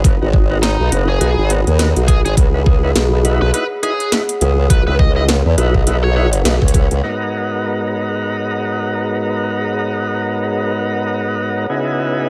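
This gritty, playful glitch hop cut opens at a swung 103 BPM in G# minor. A knocking, up-front electronic kick, a cracking snare with metallic hats and rim clicks, and a formant-swept wobble bass all start together, with the bass's compressed pulse-and-sine tone thickened by chorus and tube saturation. Beneath them sits a dark, warbling, tape-like pad in the background, nostalgic and lo-fi with chorus, reverb and sidechain pumping. A smooth tonewheel organ adds clean stabs through a slow rotary speaker with dub echo, and a biting, overdriven lead guitar carries the picked melody, roughened by 12-bit sampler grit and echo. The harmony moves between G#m7 and C#m11. The guitar bows out at 6.3 seconds, and after a band accent at 6.5 seconds the drums and bass drop away at 7.0 seconds, leaving the pumping pad and organ to drift on in an echo-heavy digital ambience.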